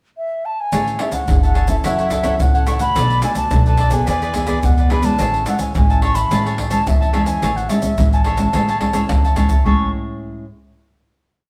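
Festive and playful, this short samba and choro piece opens with a reedy wooden baroque flute sounding a brief pickup, tongued with vibrato in motif-based phrases, before a crisp, bright cavaquinho strums in sixteenths, a fingerpicked classical nylon-string guitar adds thumb bass and syncopated plucked chords, a woody, thumpy pizzicato upright bass on gut strings sits in the background with a samba figure, and up-front, compressed, saturated percussion of tight surdo, pandeiro, egg shaker and tamborim drives the band, all playing live in a stone room, until a drum fill at 9.1 seconds leads into a final chord that rings to 11.5 seconds.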